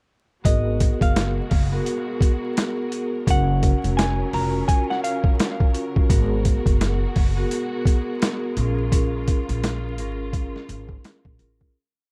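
A gritty, overdriven sampler-style drum kit with a thumpy kick and high-tuned snare drives this reflective, dark 85 BPM boom-bap hip-hop piece in G# dorian, with a woody pizzicato upright bass sliding through a deep looped line, mellow soft-mallet vibraphone chords chopped like a sample under cassette tape colour, a lush bowed string pad, and a clean semi-hollow guitar melody with delay heard only from 0.5 to 5.4 seconds, all over vinyl crackle before a fade-out from 8.9 seconds.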